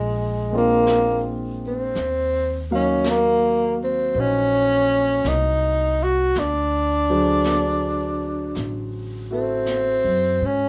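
A breathy tenor saxophone opens this melancholic, intimate jazz ballad together with a pizzicato upright bass. The saxophone sits up front, playing the melody in a mellow subtone with light vibrato and scooped notes, while the bass gives a woody, thumpy pulse from its steel strings. A warm concert grand piano joins at 0.5 seconds with natural-sounding accompaniment and a deep low end, and a distant, roomy brush kit of snare and hi-hat enters at 0.9 seconds. The tempo is a slow 55 BPM in 4/4 with a gentle swing on the eighths, and the harmony moves from Bb7 to Ebm7 and then to D7#11. Light reverb and a small-room ambience give this short excerpt the rough feel of a home demo.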